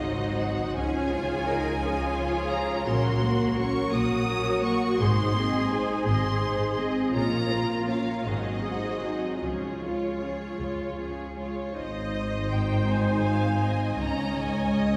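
A swaying 6/8 pulse, stretched by rubato, carries this lyrical, warm slow movement for string orchestra, cut from a longer piece. A lush, distant first violin section sings the melody with vibrato above a second violin line with a smooth top, while a close, focused viola section supplies the accompaniment and a smooth, even cello section joins an up-front double bass section on the bass. The ensemble is heard from further back in a wet church reverb, and at 11.8 s the music moves into a new key and a new section.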